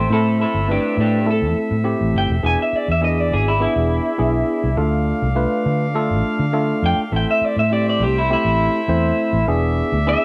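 An electric guitar played through a small old amp carries the melody of this soulful, mournful blues, its solo tone slightly broken-up, lo-fi and compressed, sitting up front with a subtle chorus. Underneath, a vintage fingered electric bass gives a dark, round, foam-muted line that is also prominent in the mix. A tine electric piano heard through a combo amp adds clean accompaniment from 0.1 seconds, while a clear horn section holds sustained chords with a punchy attack and a smooth top, set lower than the other parts. The straight four-beat feel moves through A minor, E7 and D minor before returning to A minor and E7, all in light reverb. It is a 10.2-second portion cut from a longer piece.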